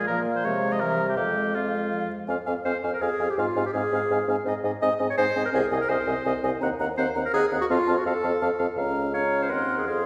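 An airy, hollow concert flute carries the tongued, vibrato-tinged melody from 0.1 seconds in this quick, urgent classical-period movement for wind quintet in F minor, taken from a longer piece at 166 BPM in 3/4. A bright, close-miked clarinet sits up front in the accompaniment alongside a soft-attack French horn in the background, while a warm oboe adds a second line and a roomy, distant-sounding bassoon anchors the bass. The restless harmony moves from F minor through C7, A-flat and C half-diminished chords, all bathed in the long, wet reverb of a church or concert hall.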